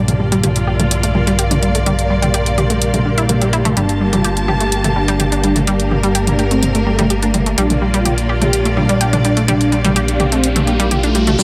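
A fat, detuned sawtooth analog bass sits up front in this melancholic, dramatic melodic techno excerpt at 126 BPM, joined by a bright, chorused analog pluck playing arpeggios under a filter sweep with delay, sustained chords from a rich, bowed studio string section, a nasal, pulse-width-modulated drone, an ethereal, airy pad in the background, and punchy, tape-warm drum machine hi-hats and toms, while a dark, brassy synth lead with vibrato enters at 3.8 seconds as the harmony moves from Bb to Gmadd9 and back, a background riser begins at 9.2 seconds, and a grainy, close tube shaker lands at the final moment, all set in a light reverb.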